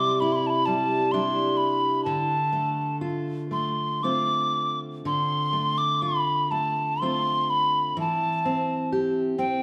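A wet recital-hall reverb, like that of a church or concert hall, surrounds this short cut from a longer Celtic slow air in D dorian, played in a rubato 3/4 at around 56-67 BPM with a longing, mournful mood. Up front, a hollow wooden whistle carries the melody between G5 and D6 with an airy tone, soft attack and vibrato. A fingerpicked steel-string acoustic guitar with fresh strings and audible finger squeak accompanies it throughout, moving from Cadd9 to Dm7 and closing on C/E at 8.0 seconds.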